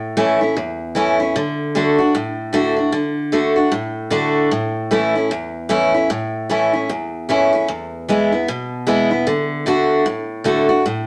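Rollicking and upbeat, this short rock excerpt bounces along at 152 BPM in 4/4, with a swung eighth-note feel in A major. A picked steel-string acoustic guitar plays alone for the full 11.1 seconds, sitting up front with a bright tone and a touch of finger squeak. Its range runs from E2 up to F#4, moving through A, D, back to A at 4.5 seconds, then E and D. The guitar carries an auditorium-like sense of space. Moderate studio reverb gives the recording a bit of room around it. The piece is cut from a longer performance.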